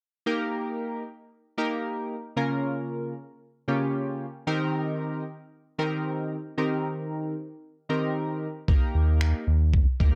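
Set in light reverb with a dark, warm production, this driving, energetic dance-pop excerpt at 114 BPM opens with glossy, detuned retro synth keys, chorused and pumping against the sidechain as they move from Eb through Bbm/Db and Cm7/Eb before returning to Eb. At 8.7 seconds a gritty, tape-warm sampler-style drum kit arrives up front with finger snaps and a thumpy kick. A round, deep analog bass joins at 8.9 seconds on a sustained Eb2, also pumping from the sidechain.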